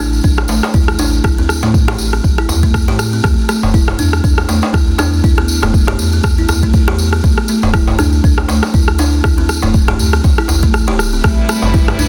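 A buzzing, woody kalimba plays arpeggios with dub echo over a round sine sub bass, both pumping with sidechain, to open this driving, hypnotic afro house excerpt at 120 BPM with a 16th-note swing, joined by a jingly, distant tambourine, an up-front deep electronic kick, a produced afro-pop kit of rim clicks and toms and a saturated clay-shelled darbuka through chords moving from A5 to Dsus2, before a brief break at 10.7 seconds gives way to a clear, vibrato-rich studio string section holding Cmaj7 from 11.2 seconds in a dense, heavily limited mix.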